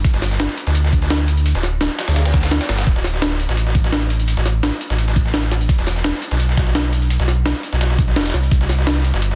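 Dreamy and lush, this liquid drum and bass excerpt at 170 BPM pairs a deep, sustained sine sub bass with octave, spanning D1 to D2 and sitting up front, with a knocking, overdriven electronic kick that drops out at 8.6 seconds, a pitched-up, tape-tinged breakbeat kit with a high-tuned snare and hi-hat, and a gritty dusty soul kit with a medium-tuned snare, overdrive and high-passed hats, room and snare, re-recorded in a small room, all in a dense, heavily limited master with little reverb.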